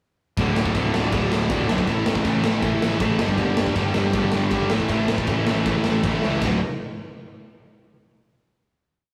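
A driving two-step groove in straight 4/4 powers this upbeat, energetic punk rock piece, with an up-front acoustic drum kit of tight kick, snare and crash ringing in a bright stone room. Two distorted electric guitars hammer out eighth-note power chords through a D5, A5, G5, A5 riff, one overdriven and set back, the other up front, with a very quiet, double-tracked high-gain guitar beneath them and a growly fuzz bass pushing steady eighth notes. A drum fill at 6.0 seconds leads into a final chord at 6.4 seconds, all captured as a rough rehearsal-room recording with light reverb and warm saturation.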